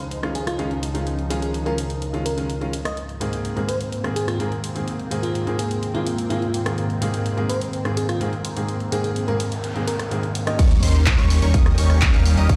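Heard through a big sound system in a bare stone room with light reverb, this triumphant, anthemic festival progressive house cut in Ab major at 126 BPM opens with a lush, detuned unison pad pumping under sidechain, a clear, worn grand piano up front, a sparkling, bell-like FM electric piano melody with chorus and delay, and a layered big-room kit of handclaps, hi-hat, rim click, tambourine and crash. A background noise sweep enters at 9.4 seconds, and at the 10.6-second drop an impact hits as huge supersaw chords, a catchy, plucky sawtooth lead arpeggiating high in the background, a deep, saturated sine sub bass and a punchy electronic kick join the pad and kit, while the piano and electric piano stop. The chords move from Dbadd9 to Abadd9 before landing on Eb7 at the drop.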